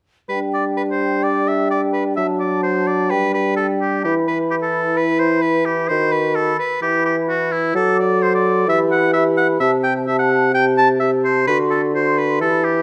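A close, detailed recording in a moderate recital hall gives this brief, cut-from-longer-piece classical-period movement for symphony orchestra a cheerful, graceful character in straight 4/4. Up front, a clear oboe with light vibrato carries a second line while a dark, smooth-topped bassoon supplies the accompaniment, and a soft-edged clarinet adds its own second line in the middle register. Behind them, an airy, hollow flute ensemble with rolled-off highs sits high in the background, all four parts sounding together from 0.3 to 12.8 seconds.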